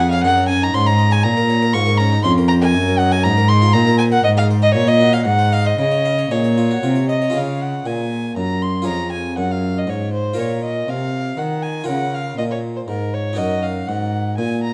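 Solemn and grave, this 14.7-second cut from a baroque-style sonata movement moves at 120 BPM in 3/4 around D-flat major and B-flat minor harmonies, with an up-front, gut-strung violin carrying the melody in a reedy period tone with light vibrato, a close, bright, dry harpsichord plucking the continuo accompaniment, and a rich bowed cello holding the bass, all set in a moderate recital-hall reverb.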